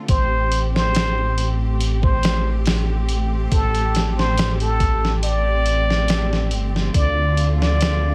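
A slow 4/4 groove with a light sixteenth-note swing comes from a dusty, sampler-style soul kit of thumpy kick, fat snare and hi-hat, gritty and compressed up front, over a deep, rumbling detuned saw bass whose beating tone sits dark and heavy. A plunger-muted trumpet carries the jazz-style solo melody with breathy wah-wah, light vibrato and scooped notes trailed by dub echo, while a bright, bowed studio string section holds intense sustained chords behind it. This smoky, cinematic trip hop fragment, cut from a longer piece, stays dry under a layer of vinyl crackle and rests on Am7 before moving to Dm7 at 6.9 seconds.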